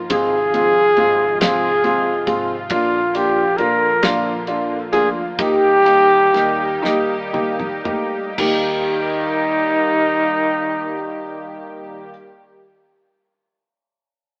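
In a slow, straight 6/8 lilt, this romantic and tender pop ballad fragment is led by an up-front, jazz-styled flugelhorn solo with a smooth top, light vibrato and scooped notes, over a mellow felt-muted upright piano whose action noise is audible, a woody pizzicato upright bass in the background, and a lush, detuned sawtooth pad whose bright chorused chords sustain throughout. A dry, dark-cymballed 70s kit with a tight kick plays as the band slows from 2.7 seconds, moves into a fill at 6.8 seconds and drops out at 8.6 seconds, just after a new section begins at 8.4 seconds. The players sound live together in one room with light reverb and an AM-radio tone.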